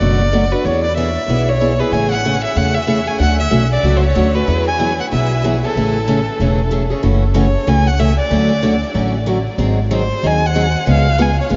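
Acoustic string swing in the jazz manouche style, this charming, swinging excerpt moves at 188 BPM in A major before shifting to F# minor at 7.0 s. A bowed violin with vibrato carries the focused melody through a diffuse ambient delay, while a boxy, parlour-style steel-string guitar picks the accompaniment with subtle chorus, and a pizzicato upright bass with gut strings gives a woody, thumpy low end. All three sit up front, yet the mix is soaked in a huge, dreamy reverb with a softened top end, and the clip is cut from a longer piece.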